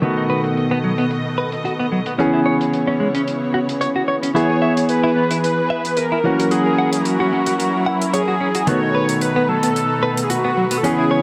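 A dry acoustic hi-hat ticks out a lightly swung 4/4 groove at 111 BPM under a filter sweep, setting a feel-good, groovy nu-disco mood over chords moving from B7 through C#m7, E and F#7. A warm, up-front grand piano with digital delay plays the accompaniment, a muted, veiled string section holds soft bowed chords with vibrato, and a bright, compressed clean electric guitar picks a riff through lush chorus, low-pass filtering and delay. At 4.4 s a thick, bold detuned unison lead enters with the melody, colored by subtle chorus and dub echo, and the whole piece sits in a lush hall reverb.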